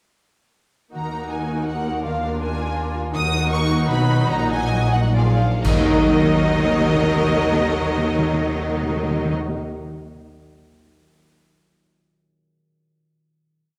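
In a straight triple metre that slows from 2.6 seconds into a final chord at 5.6 seconds, this short, stormy romantic orchestral piece sets a lush, vibrato-rich violin melody over a distant second violin line in tremolo, clear tremolo violas, a rich cello section and woody, dark double basses, with a mellow concert harp ringing out broken chords, articulate timpani strokes on bass notes from 3.1 seconds, and cymbal swells, crashes and bass drum strokes, the whole bathed in a wet scoring-stage reverb.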